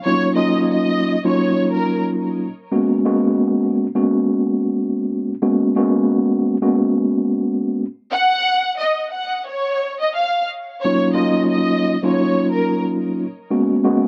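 A lush, bowed violin section opens this tough, moody hip hop excerpt at 89 BPM in Eb minor, its smooth vibrato carrying the melody up front with tape echo before dropping out at 2.0 seconds and returning at 8.1 seconds. Underneath, a mellow tine electric piano plays the accompaniment with a clean, cassette-tinged tone through built-in speakers, moving between Ebm9 and Abm11 over a swung sixteenth-note feel. The dark production sits in a small room with moderate reverb.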